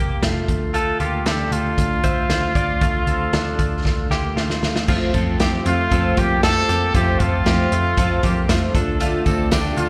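A clear, punchy trumpet carries the melody from 0.7 s, sitting up front with a light vibrato and a slapback echo, sounding both roomy and distant. This jangly indie pop fragment, cut from a longer piece, moves at 116 BPM in a straight 4/4 in F major, with a nostalgic, youthful mood as the harmony shifts from Dm to F and back to Dm. Underneath, a bright, twangy clean electric guitar plays compressed arpeggios, soaked in lush chorus, slapback and tape echo. A dark, foam-muted electric bass gives a round, amped low end, and a vintage acoustic drum kit with a punchy kick, medium-tuned snare and dark, rolled-off cymbals drives the groove, finishing the first half with a fill. A full-bodied jumbo steel-string acoustic guitar enters at 4.9 s with picked accompaniment and audible finger squeak, and at 9.0 s a reedy, breathing pedal harmonium adds sustained chords while a jingly tambourine sits in the background. 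The whole mix sounds like a live gig heard through the venue's PA, wrapped in a recital-hall reverb.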